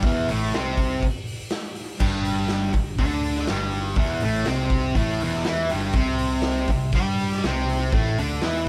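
A raw, live-in-one-room sound with moderate small-room ambience frames this gritty, menacing garage rock excerpt at 122 BPM in a straight 4/4, where a bright, double-tracked fuzz guitar drives a distorted riff from G5 to C5 at 6.0 seconds over an amped picked electric bass and a saturated, punchy acoustic drum kit of crash, hi-hat, kick and medium-tuned snare with a pumping stone-room character and rolled-off top, all three parts playing from 0.0 to 8.7 seconds.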